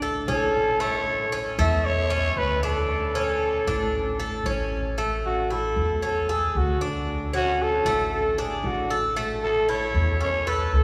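Bathed in a cathedral-like reverb with a long 4.1-second tail, this relaxed Cuban son and guajira fragment sets a metallic, double-strung Cuban tres picking arpeggios over a woody, thumpy pizzicato upright bass with dark gut-string tone, while a raspy, gritty growling trumpet with light vibrato and a smooth top carries the melody from 0.3 seconds and moves into a solo at 5.0 seconds.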